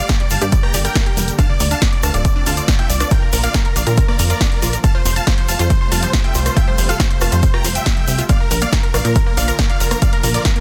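A dense, heavily limited modern master with little reverb carries this soaring, euphoric uplifting trance excerpt in F major at 139 BPM, moving through Gm, Dm7, Bb and Fadd9 in straight 4/4. A huge, bright supersaw lead carries the melody with sidechain pumping and digital delay, while in the background a round, warbling analog pluck adds a chorused second line, a thick, slow-attack unison pad sustains chords, and a vintage, detuned unison pluck runs cassette-tinged arpeggios from 0.1 s. Underneath, a punchy, tape-warmed electronic kick sits up front with an analog drum machine's hi-hat, rim click and snare, a grainy acoustic tube shaker, and a funky, wave-folded analog bass that enters at 0.3 s.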